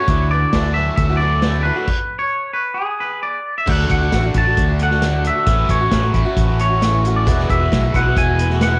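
A twangy, clean electric guitar carries the melody up front in this short folk rock and heartland rock excerpt, its picked lines colored by a cassette-tape grain that suits the jangly, hopeful mood. Beneath it, a bright, boxy acoustic guitar with fresh strings picks a swing-style accompaniment. A biting, double-tracked overdriven guitar plays a riff through a phaser. A round, dark fingered electric bass sits prominently, and a vintage drum kit of punchy kick, medium-tuned snare, hi-hat, crash and dark cymbals keeps a straight 4/4 feel with a rolled-off top in a natural studio-room sound. The band halts on a stop from 1.9 to 3.7 seconds, then resumes over D, A6 and Eadd9 chords, and a very quiet, smooth tonewheel organ slips in at 7.3 seconds with sustained chords through a slow rotary speaker, complete with key click and chorus vibrato.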